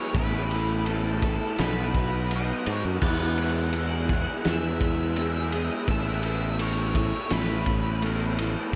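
A dark, fuzzed octave lead guitar carries the melody through analog delay until 8.0 s, drifting over a hazy, blissful shoegaze and dream pop passage cut from a longer piece and soaked in a huge ambient reverb. Beneath it, a raw overdriven garage guitar with analog chorus and a slightly broken-up, lo-fi guitar with reverse reverb sit back in the mix playing riffs, while a bright, growly fingered bass and a loose, gritty drum kit with a fat snare and punchy kick stay up front. A boxy, shimmering twelve-string acoustic plays very quiet arpeggios only until 3.0 s, as the harmony moves from Asus2 and B to Eadd9 and back to Asus2.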